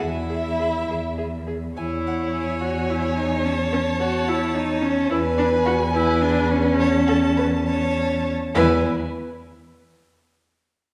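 Heard from further back in a wet scoring-stage reverb, this lively, graceful classical-period movement for string quartet flows in 6/8 at 70 BPM in E major, with a rich, focused first violin carrying the melody above a dark, expressive second violin that glides with soft-attack portamento, a smooth, even viola filling in the accompaniment, and a cello holding a low E bass, all four bowed with vibrato over harmony passing from E through A/E and E7 before the chords give way at 8.5 seconds.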